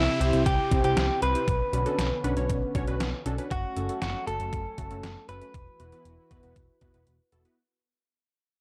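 A straight 4/4 beat from a detuned, overdriven 8-bit drum machine, up front with a thumpy kick, medium-tuned snare and hi-hat, kicks in at 0.2 s under a dark, round, foam-muted picked bass with transformer saturation, giving this cut from a longer synth-pop piece a driving, cool feel. A clean, compressed, direct-recorded electric guitar carries the melody up front over round, full-bodied analog keys with a filter sweep and chorus, while a shimmering chorused pulse-width pad holds sustained chords in the background through C, Bmadd9, F#m and Esus2. A downlifter sweeps in the background during the first 3.5 s, and the whole dry, gritty, cassette-toned recording fades out across its 7.6 seconds.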